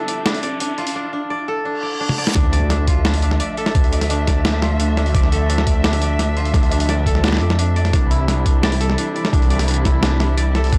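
The drums move in a half-time 4/4 feel at 172 BPM, a heavy, cinematic slice of half-time drum and bass in D minor, cut from a longer piece. A sampler-style boom bap kit of hi-hat, medium-tuned snare and toms enters at 0.1 seconds, pitched down, compressed and gritty, while a koto plays woody, fingerpicked arpeggios through vintage 12-bit sampler grit and analog delay over sustained chords from a distant, bowed chamber string section with expressive vibrato and sidechain pumping. A very quiet, flickering granular texture glints in the opening second as an electronic riser sounds in the background, a reverse cymbal and drum fill build tension, and the drop arrives at 2.4 seconds with an impact. There a thumpy, pitched-down electronic kick joins alongside a deep, rumbling detuned saw bass that sits up front with beating unison voices. The harmony rests on Dmadd9 before shifting to C at 7.9 seconds. 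The mix is dry and gritty, colored by transformer saturation and cassette tape, with little reverb.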